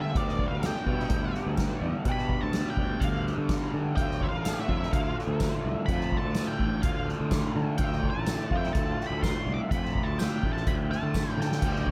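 Dark and mysterious, this echo-heavy psychedelic rock excerpt features a dark, fuzzy octave-fuzz lead guitar soloing over an up-front, double-tracked raw garage guitar riff drenched in overdrive, flanger and tape echo, a growly, bright fuzz bass, a soft-mallet drum kit with a boomy kick and dark cymbals entering at 0.2 seconds and closing with a fill at 11.4 seconds, a very quiet, glassy glass harmonica holding ethereal sustained chords, and a jingly, distant tambourine in the background from 4.5 seconds.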